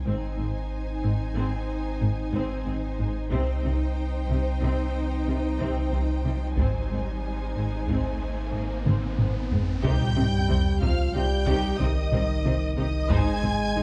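Dark and reverberant, this vast, brooding hybrid orchestral-electronic film cue in 5/4 opens on a lush bowed string bed, with a focused violin second line, intense viola accompaniment, distant cellos and very quiet double basses, all laid over soft-attack French horn chords in the background and a deep, round sub bass, before compressed, saturated taiko drums with heavy sticks arrive at 3.3 s, an electronic riser and sub drop build beneath to an impact, and an expressive, high studio violin melody enters at 9.8 s.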